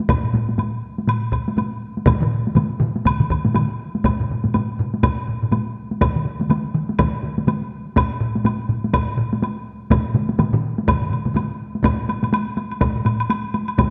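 Driving and powerful, this Japanese traditional taiko ensemble excerpt at 123 BPM in swung 4/4 pushes steadily faster, with two up-front solo taiko drums (one struck with heavy sticks, the other with hard sticks, close and dry) sounding alongside a close hard-stick taiko ensemble, a woody woodblock, and a second heavy-stick ensemble set back in a small room that joins at 2.1 seconds, all inside a wet scoring-stage reverb.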